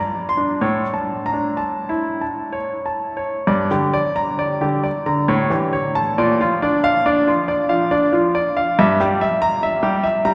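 In a slow triple metre around 62-72 BPM, the music breathes with a free, rubato pulse. This is a baroque-style suite movement for solo grand piano, cut from a longer piece, with an introspective, grave mood, tuned slightly low to A4 = 436 Hz. The concert grand sounds clear, intimate and polished, spanning G2 to C6, with deep bass, long sustain and the mechanical noise of the action audible. The harmony opens on a rootless G minor add-eleven colour and moves through A major. At 3.5 seconds a second section begins, passing through G minor, A7 and a rootless B-flat before settling on E diminished over G at 8.8 seconds. A cavernous cathedral reverb with a 7.2-second decay surrounds the instrument, and the listener seems placed further back in the hall.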